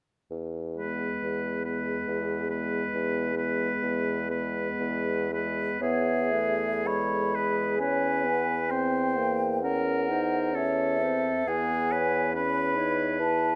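Bathed in light reverb, this serene classical excerpt for wind quintet in a rubato 3/4 opens on an up-front, mellow bassoon bass at 0.3 s, joined by a warm oboe second line with light vibrato, a dark clarinet sitting in the background and a vintage-toned French horn, before a pure, hollow concert flute with vibrato takes the melody at 5.8 s, the harmony shifting to an Edim7 at 8.7 s before returning to E.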